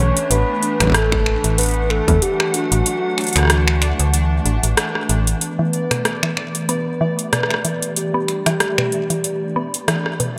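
A melancholic, intricate IDM excerpt opens with a warbling, nostalgic lead over a hollow, flute-like pad with vintage 12-bit sampler grit, a metallic FM bass up front, and a faint pulsing gated texture in the background. A booming analog drum machine adds finger snaps, metallic hats and rim clicks in a lightly swung feel, and a distorted electronic kick appears briefly. The bass stops at 5.3 seconds, and from 5.6 seconds a woody, round, mallet-like FM pluck plays arpeggios as filter sweeps move across the pad and the pluck, all set in plate reverb with a bright 1980s-style digital sheen.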